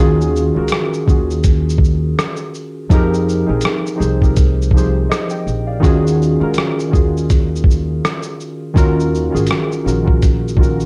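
Reflective and melancholic, this lo-fi hip hop clip from a longer piece sets warbling, detuned synth keys with chorus and cassette-tape colour up front over woody pizzicato upright bass, while a muffled, compressed sampler-style kit of thumpy kick, hi-hat, rim click and shaker enters at 0.2 s with a swung sixteenth-note feel, all drifting through Ebm11 and Fm11 in a dark, lightly reverberant mix.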